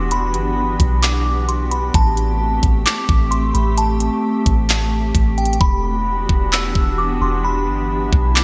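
A half-time trap groove at 131 BPM in 4/4 drives this atmospheric cloud-rap fragment in A dorian. The electronic drum kit enters at 0.1 s with a knocking kick, handclaps and crisp hi-hats, all sitting up front with gated reverb, and the hats drop out at 5.6 s. Beneath them a soft, round, sine-like 808-style bass holds the low end with a fast attack that decays into dark depth. A mellow FM pad sustains the chords from Em7 to Am7 and back to Em7, its slow attack and long release thickened by ensemble chorus and built-in reverb while sidechain pumping makes it breathe against the beat. Above it, a crystalline synth bell carries the melody high in its register, its bright, decaying tones shaded by chorus, a low-pass filter and digital delay. Light reverb, digital ambience and a bright 1980s-style digital production give the whole ethereal, spacious mood a gleaming sheen.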